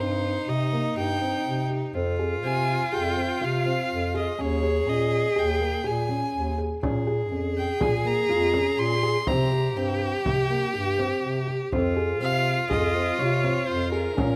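A clear, airy-bowed violin melody opens this restless, hypnotic contemporary chamber piece in 5/4, joined from the start by a focused, up-front cello second line, dark felt-muted upright piano arpeggios with audible action noise, and a mellow bass clarinet bass with vibrato and scooped notes, before a deep frame drum played with soft hands enters at 6.8 s, the ensemble captured by close, detailed microphones in light reverb.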